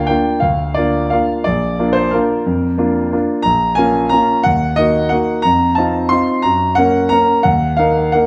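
Set in a dark, reverberant recital hall, this brief fragment of a wistful, nostalgic classical waltz features a solo concert grand piano, clear and up front with an open tone and deep bass, playing in a flexible, rubato three-beat lilt as its harmony shifts from bright major chords into shadowy minor colours and an F7 before settling onto Gb and Ebm.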